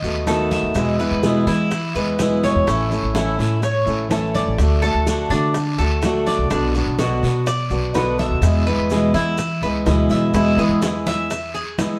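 A dark, boxy fingerpicked acoustic guitar sits up front with swing, joined at once by the metallic double strings of a Cuban tres playing arpeggios, a woody, thumpy pizzicato upright bass, thick-skinned, damped congas and grainy maracas. Tight high-tuned bongos and a raspy guiro come in at 0.3 seconds, filling out a relaxed Cuban son and guajira groove at 125 BPM that moves through E, A, D and Bm in a live room with moderate reverb. A drum fill at 10.1 seconds leads into a new section, and the bass drops out at 11.6 seconds in this cut from a longer piece.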